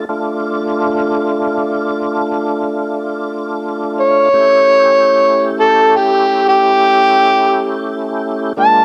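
Mournful and soulful, this slow 12/8 blues excerpt at 57 BPM in D harmonic minor opens on a full, lightly overdriven tonewheel organ holding sustained Dm and A7 chords through a slow rotary speaker and chorus vibrato, before an up-front, gritty amplified harmonica enters at 4.0 seconds with a jazz-style solo of scooped notes, tongue slaps and light vibrato, all in a snug booth with the character of a home cassette recording.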